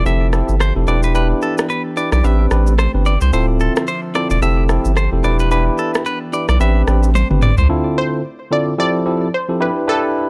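An airy, breathy pad with chorus, a bright, twangy clean guitar riff through analog delay and a thick, saturated sub bass sitting up front open this hypnotic, sultry afrobeats piece in A minor at 110 BPM. They are joined at once by a clean tine electric piano and a produced electronic drum kit of rim clicks, shaker and toms, cycling through Fmaj9, Em7, Am11 and Dm9 with a swung sixteenth-note feel. After a drum fill, the pad, guitar, bass and drums stop at 7.7 seconds, and from 8.0 seconds a round, detuned sawtooth pluck with a filter sweep and chorus carries the melody over the electric piano, which plays on to 10.3 seconds, all in a dry, gritty sound coloured by transformer saturation and cassette tape.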